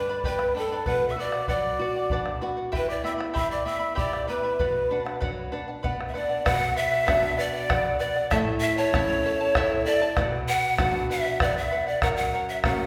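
Set in a wet recital-hall reverb, this short cut from a longer Andean folk piece moves in an earthy, wistful 3/4 at 97 BPM in B minor. Large pan pipes carry the melody up front with a breathy, hollow tone, vibrato and a soft chiff. Behind them, a mellow end-blown quena sings a second line over fingerpicked charango with shimmering double strings and a fingerpicked flamenco guitar whose finger squeak is audible. A round bombo enters at 0.2 seconds and sits up front, as the chords move through G, B minor, E minor and A before landing on F#.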